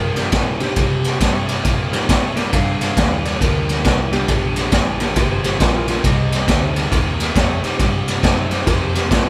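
Recorded by a band playing live in one room with light reverb, this cut from a longer electric blues shuffle in G minor moves at 137 BPM in a swung 4/4, carrying a mournful, soulful mood. Up front, a raw garage drum kit of kick, snare and ride sounds gritty and saturated, with a boomy kick, a high-tuned snare and a rolled-off top. An overdriven electric guitar picks a bright riff in the low register, while a vintage fingered bass, round, amped and foam-muted, sits in the background. A clean lap steel carries the melody with slide and volume swells, its tone dark and compressed, also set back in the mix. A very quiet grand piano adds brilliant, intimate accompaniment with audible action noise and long sustain over chords moving from Gm through C5 to Cm.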